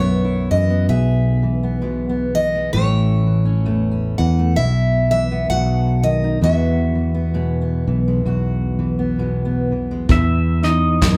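Peaceful and pastoral, this slow, swung folk piece in E major opens with a bright jumbo acoustic guitar picking a high melody over a full-bodied dreadnought guitar fingerpicking the chords and an up-front fretless electric bass with a warm, amped tone, all in a live-room feel with a wet reverb. At 10.1 seconds the melody guitar has already stopped, and a twangy, compressed pedal steel guitar takes a short solo with slide and volume swells. A soft brush drum kit with a tight kick and medium-tuned snare joins at the same moment as this brief fragment of a longer piece closes.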